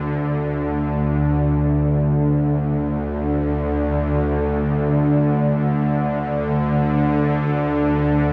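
A single bowed-sounding drone opens the recording and carries it alone from 0.0 to 8.3 s, an ominous, unsettling piece of ambient music. Its string-like tone is tense and bright, built from a sawtooth edge blended with a triangle layer, unison voices and a noise layer. The note range spans D2 to D3, with a slow attack, long sustain, a lingering release and vibrato, all sitting up front in the mix and tuned slightly below standard pitch at A4 = 439 Hz. A huge, drenched reverb with a decay near 8.5 s surrounds the drone, and the sound shifts into a new section at 1.4 s. The passage is cut from a longer piece, so it feels like a brief glimpse of a larger dark atmosphere.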